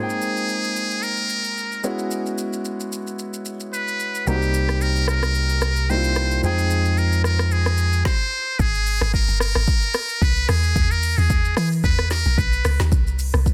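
A buzzy, brilliant muted trumpet carries the melody up front in this relaxed amapiano cut, its light vibrato floating over a natural-sounding concert grand piano with a rich bass register that accompanies until 8.1 seconds. A layered electronic deep house kit of deep kick, woody snare, smooth hats, rim click and shaker keeps a swung groove, joined at 4.3 seconds by a punchy, amped fingered electric bass. After a brief stop, the drop at 8.6 seconds brings in a dark, round, percussive log drum bass with a fast attack and decaying tail, all set in a dry, dense, heavily limited modern master.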